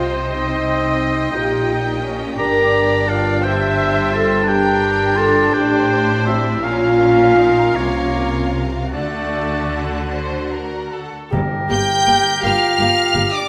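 Cinematic, sorrowful film-score excerpt in a slow, rubato 6/8 at 48-58 BPM, where a distant, vibrato-rich violin section carries the longing melody over a second violin line, a bright solo oboe and a clear clarinet, as dark violas, a soft-attack French horn section, lush cellos and expressive double basses fill out the harmony from Cm through Bbmadd9 to D, before a mellow flute ensemble and close, dry timpani enter at 11.3 seconds on a Gm chord, all bathed in a wet scoring-stage reverb.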